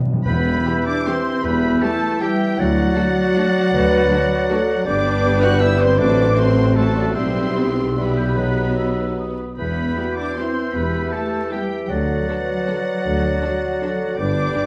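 The rubato 3/4 lilt of this orchestral ballroom waltz in E minor moves between 140 and 172 BPM, opening with a round, soft-malleted timpani fill at 0.0 seconds that returns briefly at 8.4 seconds. The mood is bittersweet and sweeping, carried by a rich, focused violin section singing the high, vibrato-laden melody from a distance, while a second, lush violin section sits in the background on a lower line. Oboe, airy hollow flute and a distant clarinet weave secondary lines alongside a close-miked mellow bassoon, a very quiet viola section and a tight, roomy French horn section holding sustained chords. Warm cellos, a clear bowed double bass section and a soft-attacked tuba anchor the bass as the harmony travels from Em through D, G and a B chord before returning to Em. The production is dark, set in a wet recital hall reverb with vinyl crackle, and the passage is cut from a longer piece.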